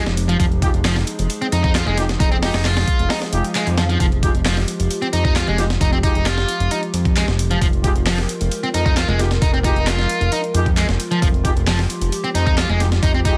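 Raw and swaggering, this breakbeat excerpt drives along at 133 BPM in a straight 4/4, sitting in F minor on a single Fm9 chord. Up front, a bright, picked electric guitar riff carries distortion, gritty 12-bit sampler crunch and tape echo, while a fat, thick analog bass built from detuned sawtooth, square and triangle tones, with ring modulation and a filter sweep, holds the low end with a fast attack. A compressed, sampler-style breakbeat kit supplies a thumpy kick, high-tuned snare and hi-hat in studio reverb, backed in the background by an overdriven analog drum machine adding handclaps and hi-hat from a large room. A warbling, nostalgic pad of detuned, mellow sustained chords pumps against the beat through chorus and its own reverb, and from 0.6 seconds a brass section plays classical-style stabs with light vibrato, a soft attack and tape echo. A brief electronic swell sounds in the background between 3.3 and 4.0 seconds, and the whole dense, heavily limited mix is dusted with vinyl crackle and light reverb.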